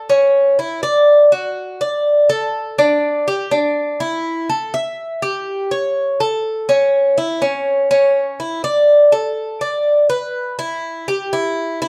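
A Cuban tres carries this short latin passage entirely on its own, its picked double strings ringing with a warm, metallic edge and some strings doubled at the octave. The mood is warm and relaxed, set at 123 BPM in 4/4 with a straight feel in D major. Placed up front, the acoustic tres plays from 0.0 to 11.9 seconds, moving between C#4 and E5. Close, detailed microphones capture the texture of the paired strings, while a moderate large-studio reverb adds a sense of space around them. Cut from a longer piece, the clip offers just a single section of relaxed solo playing.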